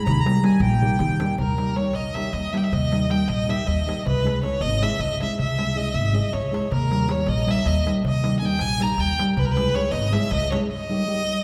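A clear, focused violin with vibrato carries the bowed melody up front yet slightly distant, entering at 1.4 seconds after a reedy accordion opens this restless, fiery Balkan wedding-band piece in a fast 7/8 at 316 BPM, set in Eb phrygian dominant and cut from a longer performance. A full-bodied, thumb-plucked nylon-string guitar gives deep classical accompaniment, while a woody, thumpy pizzicato upright bass on gut strings moves between Eb and Dbm harmonies and a crisp metal-shell darbuka sits close and dry in the background, adding fills along the way. The players ring out in a church-like space with a long, wet reverb, and the band breaks at 10.7 seconds.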